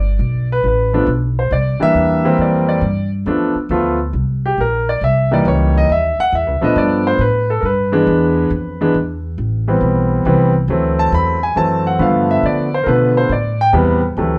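A clear concert grand piano carries the melody up front, its natural tone ringing with long sustain and a deep low end as it ranges from C3 to B5. This is a warm, sophisticated jazz waltz in the piano trio style, set at 137 BPM in 3/4 with a swung eighth-note feel, in G mixolydian. Beneath it, a woody acoustic upright bass with steel strings is plucked pizzicato between G1 and D3, and both instruments play for the full 14.4 seconds of this passage, which is cut from a longer piece. The harmony moves from G through C7, G7, C7 and C#dim7, then travels through E7, Am7 and D7 to G7 and Am7. A wet club reverb with a 0.7 s decay places the duo further back in the room.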